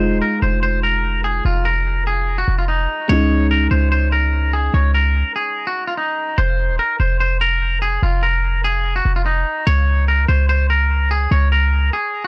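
A half-time trap groove at 146 BPM in 4/4 drives this eerie, melancholic hip hop fragment in F minor. A deep, boomy 808-style bass with a sine core, a noise layer and a fast, decaying attack sits up front, carrying the low end until 11.9 seconds. A twangy, clean electric guitar, fingered and compressed, plays the melody across the full length, its tone treated with analog delay and placed prominently. Beneath it, a dark, boxy grand piano with short sustain accompanies over Fm7 and Dbsus2, reaching a brief break at 5.6 seconds and dropping out at 6.4 seconds. The second half moves to a bare F5 before the harmony falls away entirely. The recording has a dry, gritty hardware character with transformer saturation and very little reverb.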